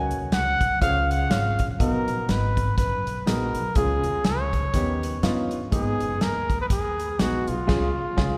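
This uptempo gospel excerpt, cut from a longer piece, has a soulful, jubilant feel with a light swing on the eighth notes. A breathy, mellow trumpet carries the melody up front in a jazz style, scooping into its notes over a smooth top. A concert grand piano accompanies with deep bass and a natural, intimate tone, its action noise audible, while a pizzicato upright bass on gut strings gives a woody, thumpy low end. The acoustic drum kit enters at 0.1 s and sits close, with a dark, rolled-off top, a tight kick, a medium-tuned snare, hi-hat and crash cymbal. The harmony moves through chords including D#7b13 and G#m before the band hits an accent from 7.7 s to the close at 8.4 s, the whole recording set in the lush reverb of a church or concert hall.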